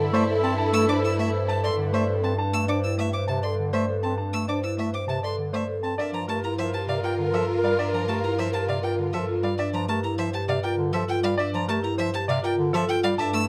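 Meditative yet urgent, this minimalist classical pattern piece at 100 BPM in 3/4 and G dorian sets a worn baby grand piano melody over a soft-attack bass clarinet accompaniment, mellow soft-mallet vibraphone and focused, bowed solo violin arpeggios, and a smooth, bowed double bass holding G2, while a pure alto flute second line and lush string-section chords sound briefly at the start and return at 6.0 s as the harmony moves from Am/G to Gm9, captured with close, detailed microphones in a moderate large studio reverb.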